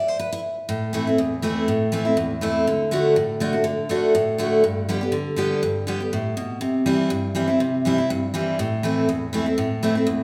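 A picked steel-string dreadnought guitar carries this short bluegrass passage alone, its tone bright and full-bodied and placed up front. The mood is haunting yet rustic, moving at a quick clip in a straight four. After a brief opening before any chord is established, the harmony settles at 0.7 seconds into a cycle of Am, D, G and C before returning to Am. The guitar spans from its low bass strings up into the upper register. A recital hall reverb surrounds the playing with a lingering, churchlike bloom, lending the rustic picking a solemn, spacious air. The clip is cut from a longer piece and stops at 10.2 seconds.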